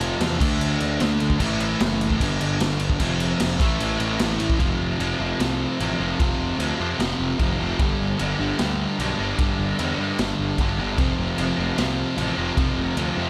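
The recording sounds dry and close, with a raw garage drum kit placed up front, its pumping small-room sound, punchy kick, medium-tuned snare and dark, rolled-off cymbals all saturated and gritty. This upbeat, energetic punk rock excerpt, cut from a longer piece, drives along at 150 BPM in a straight 4/4. A bright, overdriven electric guitar plays the riff up front, joined by a sludgy, dark distorted guitar sitting in the background, while a picked electric bass adds a growly fuzz tone. The opening section moves through D5, A5, G5, F5 and A5 before the band drops into half time at 4.6 s. That second section is built on F5 and G5 and runs to the end of the excerpt at 13.3 s.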